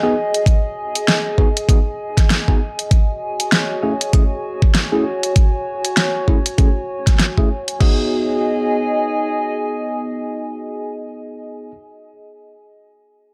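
A dry, gritty cassette-tape sound with light reverb frames this swaggering glitch hop excerpt in G# minor, moving at 98 BPM in 4/4 with a 59% swing on the sixteenths. A clean tine electric piano plays stabs up front, run through a phaser, sidechain pumping, a low-pass filter and analog delay, with a filter sweep across its first 7.8 seconds. Beneath it, a dark, warbling tape-like pad adds a nostalgic lo-fi texture, its detuned, wave-folded tone softened by chorus, built-in reverb and sidechain pumping, sustaining with a slow attack and long release. The drums arrive within the first second: a dubstep kit comes in first, its huge snare, hi-hat and crash overdriven and treated with studio reverb, and an overdriven electronic kick soon joins it, knocking hard at the front of the mix. The harmony moves from G#m7 to F#m7 before returning to G#m7 at 7.8 seconds, and the drums stop shortly after at 8.0 seconds, leaving the piano and pad to carry the closing stretch.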